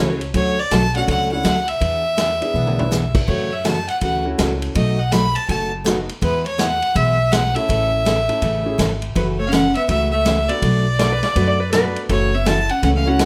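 Western swing country at 163 BPM in 4/4 with a 64% eighth-note swing, playful and swinging in a brief excerpt cut from a longer piece. A nasal, earthy fiddle with light vibrato carries the melody up front throughout, backed by an intimate upright piano with audible action noise and a bright, full-bodied picked acoustic guitar where finger squeak can be heard. A thumpy, gut-strung pizzicato upright bass anchors the low end, while a roomy, distant big-band drum kit with a boomy kick enters at 0.2 seconds and drops a fill around 2.5 seconds. A dark, clean hollow-body jazz guitar adds a second line from 9.2 seconds, and a scooped electric lap steel, heard only for a moment at the very start, slides back in briefly near 11.0 seconds. The chords move through Dmaj7, E7, F#m7 and B7 before settling on E and A, then turn back to F#m7 and Bm7, all under a light reverb.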